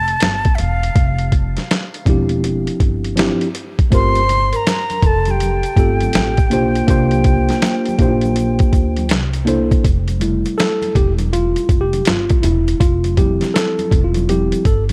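A gritty, pitched-down boom bap drum kit with a thumpy kick sits up front in this cool, smoky jazz-hop piece at 81 BPM, swung on the sixteenths, with woody pizzicato upright bass beneath it. A breathy flute with vibrato and analog delay carries the melody until 9.1 seconds over a worn, slightly out-of-tune tine electric piano, while a ringing soft-mallet vibraphone and distant tube shaker and congas join at 3.9 seconds. From 9.8 seconds the mellow electric piano takes a solo, all framed by a dark, small-room production.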